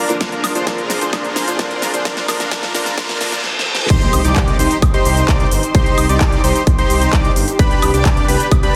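A punchy, up-front electronic kick drives this emotional, anthemic festival progressive house piece in C minor at 130 BPM, joined by a big-room dance kit with a huge snare and crisp hats, a thick detuned saw bass, a dense compressed supersaw riff with delay, a bright lush pad under chorus and phaser, and a smooth vintage grand piano that plays only until 3.3 seconds through the build-up, while a very quiet riser and reverse cymbal lead into the drop at 3.9 seconds, where a dark unison lead enters with cassette-tinged arpeggios and an impact lands, with sidechain pumping on the pad, supersaw, bass, piano and lead, all inside a hall reverb and a heavily compressed, radio-like sound.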